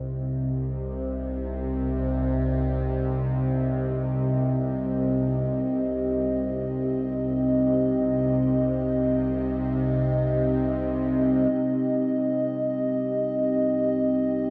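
A dark, analog synth pad fades in from the opening moment over a low, bowed-sounding drone, setting a desolate, brooding mood in this dark ambient drone piece cut from a longer work. The pad holds sustained minor chords with a deep, nasal tone, blending square, sawtooth and triangle waves with a detuned sub-octave layer, slow attacks, long releases and chorus. Beneath it, the string-like drone is tense and bright, built from detuned sawtooth voices in unison with a noise layer, vibrato, a phaser and its own reverb, while a filter sweep shapes it through the first 11.5 seconds. Both parts sit up front and sustain together through the whole 14.5 seconds, with a new section arriving at 11.5 seconds. A huge, wet reverb with an eight-second tail surrounds the sound and deepens its cavernous gloom.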